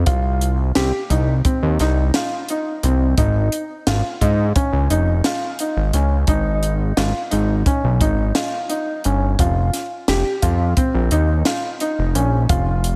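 Intricate and driving, this progressive instrumental in 9/8 sets a fat, detuned, saturated analog bass with a plucky filter up front against a worn, open baby grand piano playing delayed arpeggios, while a dry, compact cocktail drum kit with a high-tuned snare and punchy kick keeps the uneven meter moving in a small, lightly reverberant room.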